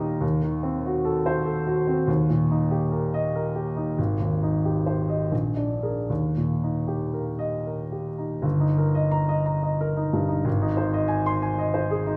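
A clear, open baby grand piano sits up front in a wet recital hall, its reverb lingering for about 1.4 seconds. This short passage, cut from a longer romantic character piece for solo piano, is passionate and lyrical. It moves in 3/4 with a rubato feel, the tempo drifting between 74 and 100 BPM, in Eb major with the instrument tuned to A4 = 439 Hz. The piano spans from G1 up to C6, opening on an Ebdim7 chord before settling into Eb and passing through Abmaj7 and Bb7 back home. At 8.4 seconds a new section begins on Eb/G and reaches Ab at 10.5 seconds, before the passage ends at 12.2 seconds.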